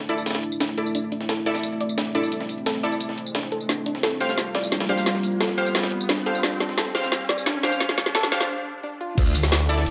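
Tense and dark, this excerpt of technical drum and bass at 175 BPM in D minor builds from the start as a deep, moody pad with sampler grit and sidechain pumping holds sustained chords, while a soft, round pluck arpeggiates under a filter sweep and bold, punchy orchestra-hit-like stabs ring out with reverb and delay. An up-front drum and bass kit with a woody snare, bright hats, crash and tambourine drives over a gritty, compressed breakbeat kit in the background, with a drum fill and a riser pushing toward a short break at 8.5 seconds. At 9.2 seconds a knocking kick lands with a brief swirling, phased saw bass, and a growling FM bass takes over up front, all set in a moderate plate reverb.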